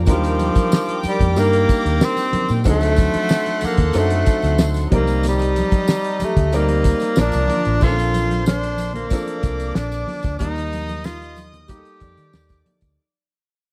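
Lush 1970s-style soul at 93 BPM in 4/4 with a straight feel, this short excerpt has a romantic, lush mood and a dry, close studio sound with little reverb. A breathy, whispered tenor saxophone carries the melody up front, its soft attack and light vibrato touched by a slapback echo. Beneath it, a round, foam-muted fingered electric bass sits prominently, while a cloth-damped drum kit gives a thuddy pulse with a fat snare, tight kick and dark cymbals on a rolled-off top. A warm baby grand piano supplies accompaniment, and a quiet studio string section with a reedy, gut-string tone adds a bowed second line, with soft-handed congas ringing faintly and a jingly tambourine in the background. The harmony moves through rich chords such as Ebmaj7, D7b9 and Cm9, passing through Bbmaj9 and returning to Ebmaj7 as the music fades out from 7.8 seconds to the end at 13.0 seconds.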